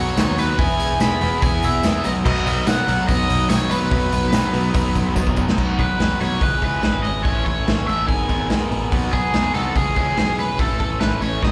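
A raw, overdriven garage guitar carries the melody from the start, over two bright fuzz guitar riffs (one very quiet), a punchy picked electric bass and a barely audible, warbling string machine of violas. It is a wistful yet upbeat indie rock piece at 144 BPM in B mixolydian, heard live through a club PA with light reverb. A gritty, up-front garage drum kit with dark cymbals and a pumping room sound joins at 0.2 s, just after a jingly tambourine in the background enters at 0.1 s. Both the tambourine and the strings stop at 5.5 s, as a drum fill from 5.2 s leads into a passage moving through B, C#m7, A and G#m.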